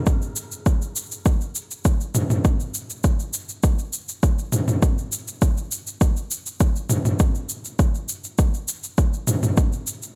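A straight 4/4 pulse at 101 BPM drives this hypnotic, meditative downtempo passage, cut from a longer piece. An electronic kick drum anchors the groove from 0.1 to 9.7 seconds, its deep, layered tone pushed up front and roughened with overdrive. Alongside it, from 0.1 to 10.1 seconds, an electronic shaker and toms fill out the percussion, sitting a little lower in the balance but also close and forward, with their own overdriven grit. Both drum parts carry the character of having been re-recorded in a large room, yet the overall mix stays dry, with little reverb. The result is a single section built purely from produced, layered electronic percussion.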